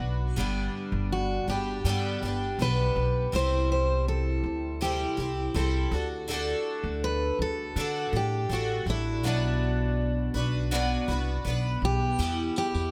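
A straight, easy-going 4/4 feel carries this carefree acoustic pop excerpt, where a bright, shimmering, double-tracked twelve-string guitar and a woody pizzicato upright bass sit up front from the start, a full-bodied steel-string guitar with delay and audible finger squeak picks out the melody from 1.1 s, and a jingly, vintage tambourine slips into the background at 12.2 s, all within a small, lightly reverberant room.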